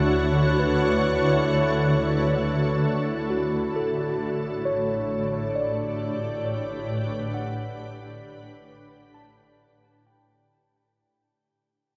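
A shimmering ambient pad sits up front, holding slow-attack sustained chords with an octave-up shimmer, chorus and reverb, moving from Dmaj7 to A7sus4 at 3.8 seconds in this serene, luminous ambient fragment at 66 BPM. A mellow tine electric piano plays clean arpeggios through phaser and dub echo, while a calm, detuned organ-like drone and a distant bowed double bass section with expressive vibrato rest in the background. The echo-heavy mix is bathed in wet spring reverb, and the whole fades out from 1.4 seconds to 11.0 seconds.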